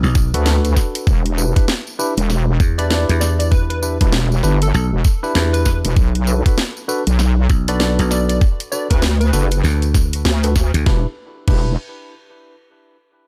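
A dry, up-front mix opens this swaggering, funky glitch hop excerpt at 98 BPM in E minor with a swung 16th feel, where a knocking electronic kick and a drum and bass kit with cracking snare, hi-hat and crash sit in small room ambience beneath a growly, foam-muted thumbed slap bass and a heavy, saturated wobble bass with chorus, while a jingly tambourine, barky tine electric piano stabs with sidechain pumping and delay, and a catchy plucky unison lead with cassette tape character and delay from 2.8 to 9.6 seconds ride over Bm7, Em7 and D6 chords during the drop.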